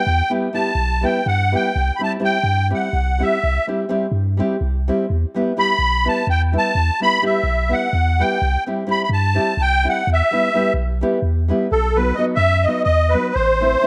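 Fiery and virtuosic, this short cut from a longer Balkan wedding-band folk piece drives along in a straight 7/8. A reedy, shimmering musette accordion carries the melody up front and takes a solo from the start until 11.7 seconds. Beneath it, a deep sine sub bass adds punchy, pitch-drop attacks that sustain with a mellow body. A bright, fingerpicked classical nylon-string guitar supplies the accompaniment. The harmony rocks between E minor and C before the passage turns toward B and then A minor in the closing seconds. A wet spring reverb and a small room ambience give the band a lively, splashy space.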